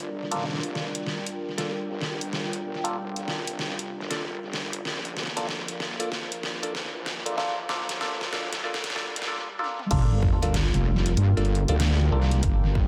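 A light reverb and an echo-heavy, high-passed mix frame this funky, swaggering glitch hop excerpt in G minor, moving at 95 BPM in 4/4 with a 63% swing on the sixteenths over a single Gm7 chord. A smooth, detuned sawtooth analog pad holds sustained chords with chorus and sidechain pumping while a filter sweep runs across it through the build-up, and a warbling, nostalgic lo-fi pad of sawtooth and triangle tones sits in the background with phaser, built-in reverb and pumping of its own. Underneath, a heavy, saturated wobble bass blends sawtooth and sine with a fast attack, chorus and tube warmth, and a percussive, stringy clav enters at 0.3 seconds with phased, low-passed stabs through a combo amp and tape echo. The up-front dubstep kit, with its deep snare, hi-hat, toms and crash treated with tape echo, carries drum fills through the opening stretch as a very quiet riser and sub drop hover beneath. 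At 9.9 seconds the drop arrives with an impact and a punchy, layered electronic kick that was re-recorded in a large room, driving the final section to the end.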